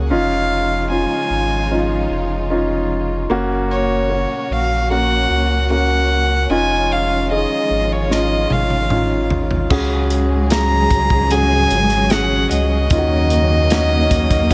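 Tender and emotional, this pop ballad excerpt moves at a patient 75 BPM in a straight 4/4, cut from a longer piece. A concert grand piano with a deep low end carries the accompaniment from the start, while a distant, bowed string section holds sustained chords in the background with soft attack, vibrato and expressive portamento, and a thick, saturated sub bass sits up front beneath them. Almost at once a solo violin takes the melody up front, its reedy, gut-string tone and light vibrato giving it a period flavor over chords that move from C#add9/E# to F# and back. At 8.1 seconds an airy acoustic drum kit enters with a fill, bringing a punchy kick, medium-tuned snare, toms, hi-hat and crash. From 9.7 seconds a lush symphonic cello section adds a second line in the background, touched with digital delay, as the harmony shifts to C#sus4 and D#m7, all set in a light, small-room reverb.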